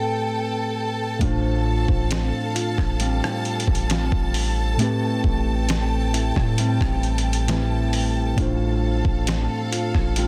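A gritty, overdriven sampler-style drum kit with a thumpy kick and rim clicks sits up front from 1.2 s in this moody, late-night contemporary R&B excerpt at 67 BPM in A minor, arriving alongside a deep, boomy 808-style bass and fingerpicked nylon-string guitar arpeggios with finger squeak and digital delay to join the muted, warbling felt-like synth keys with chorus and lush, bowed studio strings that open the passage by themselves, as Am7 and G9sus4/A alternate within a dense, heavily limited master.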